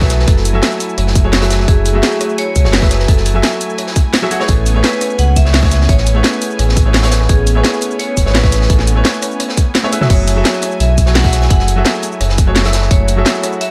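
A small-room ambience surrounds this rolling, soulful liquid drum and bass excerpt at 171 BPM in F# minor, where a deep, up-front sine sub bass with octave and a tight, tape-warm electronic kick anchor a crunchy, gritty breakbeat kit with a rolled-off top and a layered drum and bass kit with a cracking snare, bright hats, rim clicks, shaker, crash and toms. Over this, a ringing, metallic vibraphone with fast motor vibrato carries the melody through a digital delay, while a brilliant baby grand piano with audible action noise and long sustain accompanies. A lush, nasal, detuned sawtooth pad with chorus and sidechain pumping holds sustained chords in the background, moving from F#m9 to Amaj9 at 4.5 seconds and back after a drum fill at 9.8 seconds.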